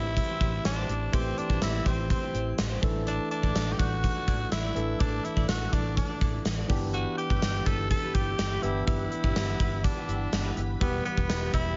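The recording sounds soft and lightly reverberant, with its top end capped at 7.5 kHz, giving this cut from a longer 1980s-style pop piece a hazy, nostalgic and dramatic air. At 124 BPM in a straight 4/4 in A dorian, a raspy, gritty tenor saxophone carries the melody with scooped notes and a touch of vibrato. A barky tine electric piano through a combo amp plays the accompaniment, and a very quiet, twangy clean electric guitar picks a riff. Underneath, a foam-muted fingered electric bass sits dark and round, and from 0.2 seconds a punchy gated drum kit fills a big room with gated reverb, with an up-front kick, medium-tuned snare, hi-hat and tambourine. High above, a faint FM bell shimmers and warbles as a second line, detuned and haloed in chorus. At 6.9 seconds a mellow, organ-like ensemble string part enters in the background with sustained chords coloured by phaser and ensemble chorus. 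Across the excerpt the harmony moves from Am7 through Dsus2/A and G6 to Em.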